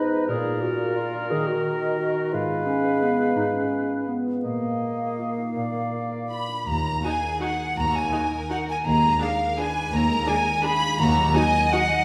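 A dark clarinet, hollow concert flute, mellow cor anglais and bassoon open this bittersweet classical excerpt in Eb minor, a rubato 3/4 at 154-190 BPM, over the ringing thumb-plucked arpeggios of a concert harp. At 6.3 seconds the woodwinds other than the flute give way to strings: a rich, expressive violin section joins the flute's second line, a clear, intense violin section carries the melody from 7.0 seconds, and a lush viola section adds smooth accompaniment. Beneath them, a background cello section and a focused double bass section hold a low Eb, all set in the reverb of a recital hall.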